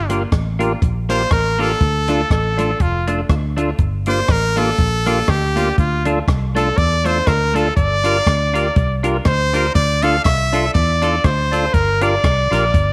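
Ska at 121 BPM in D minor, this energetic, driving passage is cut from a longer piece and swings its eighth notes lightly over a 4/4 pulse, with the harmony alternating between Gm7 and Dm. A brilliant, forceful trumpet carries the melody as a solo across the full 12.9 seconds, close-miked and up front with a pop-style vibrato. Beneath it, a fingered electric bass sits round and dark, foam-muted and direct, while a compact cocktail drum kit keeps hi-hat, rim click and a punchy kick dry and natural. A clean, twangy electric guitar stays in the background, its picked, compressed tone shaded by tremolo and slapback echo. A fat, lightly overdriven tonewheel organ adds percussive stabs with third harmonic percussion and vibrato, turning through a slow rotary speaker, all set in a light reverb.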